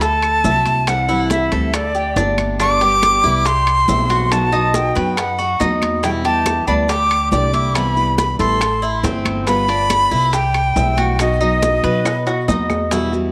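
A breathy, up-front jazz flute with vibrato and a crisp, chiffy attack carries the melody through this danceable, sultry Cuban son and guajira passage at 140 BPM, its line ringing with a slapback echo. Beneath it, a fingerpicked nylon-string guitar with audible finger squeak, a metallic, double-strung Cuban tres playing arpeggios, and a dark, thumpy pizzicato upright bass on gut strings move through chords such as Dadd9, Cmaj7 and G7. In the background sit high-tuned congas struck with hard hands, tight bongos, grainy maracas, woody claves and ringing metal-shell timbales, with a drum fill at 12.1 s, all set in a moderate plate reverb.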